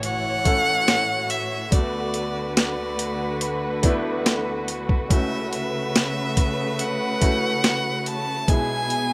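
A boom bap drum kit with a thumpy kick, high-tuned snare and hi-hat sets a straight 71 BPM pulse under this tender, heartfelt pop ballad in A major, its gritty, compressed, tape-warm sound sitting up front. A rich, smooth solo violin with vibrato carries the melody close and forward, while a clear, polished baby grand piano and a dark, veiled chamber string section, muted con sordino and bowed with a soft attack, supply accompaniment and sustained chords. A very quiet electronic impact opens the clip and lasts until 1.7 s, and the dry, rough home-demo mix is cut from a longer piece.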